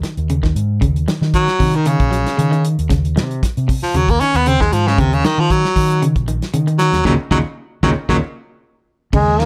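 An edgy, forceful baritone saxophone takes the lead in this defiant, intense afrobeat excerpt at 116 BPM in Eb dorian, soloing with vibrato from 1.3 to 8.2 seconds, with the band hitting an accent from 7.1 seconds. Underneath, a twangy, picked clean electric guitar plays arpeggios, a round, punchy fingered bass holds the low end, and a damped 70s drum kit with dark cymbals and a tight kick keeps a lightly swung sixteenth-note feel on an Eb7(no3) chord. A bright trombone with scooped notes and light vibrato enters at 9.1 seconds as the clip ends, all set in studio reverb.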